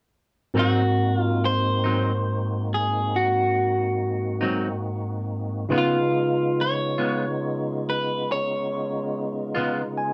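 A barky tine electric piano and a tonewheel organ open this soulful, swaggering slow blues at 0.5 seconds, joined almost at once by two electric guitars, all moving in a straight 12/8 at 47 beats per minute in Ab mixolydian. The lead guitar, played through a small old amp, carries the melody with a slightly broken-up, compressed, up-front tone. Beneath it, a bright, clean second guitar picks out accompaniment with tremolo, while the electric piano supplies a clean, direct comping part. The organ holds sustained chords with a fat, lightly overdriven sound, its slow rotary speaker, chorus vibrato and key click adding movement and grit. The harmony shifts from Ab7 to Db7 at 5.7 seconds, and the electric piano slips in a short fill at 9.6 seconds in this excerpt, which is cut from a longer piece and captured as a band playing live in one room with moderate studio ambience.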